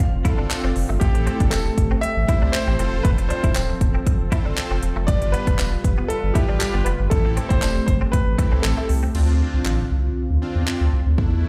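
An intimate concert grand piano melody with digital delay opens this driving, energetic dance-pop excerpt alongside an evolving, detuned pad with sidechain pumping, a twangy clean electric guitar riff tucked in the background and a punchy, overdriven pop drum kit of kick, crisp hi-hat, handclaps and crash, soon joined by a thick, saturated sub bass, a fat sawtooth polysynth with ring modulation and, from 0.5 seconds, a jingly tambourine, the whole mix set in a large studio reverb over chords moving from Dm7 through Am7, F and G7, until the piano and guitar drop out near 9 seconds as a new section begins.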